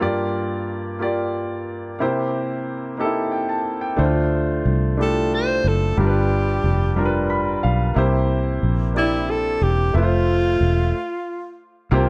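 Lightly reverberant and studio-polished, this reverent yet jubilant slow gospel excerpt in 6/8 opens on a clear, open concert grand piano with deep bass that plays accompaniment throughout and adds a fill, joined at 4.0 seconds by a round, foam-muted, dark fingered electric bass and at 5.0 seconds by a close-miked jazz-style alto saxophone solo with vibrato, a soft attack and slapback echo, before the group comes to a stop near the end over a progression that resolves to Fmaj7.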